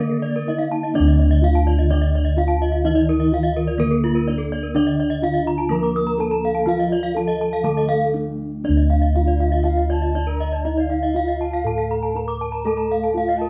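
Heard through a moderate, large studio reverb with the ensemble playing live in one room, this shimmering, hypnotic gamelan passage in D pelog moves at a straight 123 BPM in 4/4, cut from a longer piece. Up front, dark, round bossed gongs carry the bass, while a mellow bronze metallophone struck with padded disc mallets, soft and boxy, leads the melody. Around it, two horn-mallet metallophones spin arpeggios, one warm and the other bright, and a smooth, dark metallophone accompaniment sits beneath until 8.6 seconds, returning briefly at 12.7 seconds, all with the beating shimmer of paired tuning. After a brief touch at the very opening, a distant, pure bamboo bansuri with a reedy vibrato returns at 9.3 seconds to add a tongued second line above.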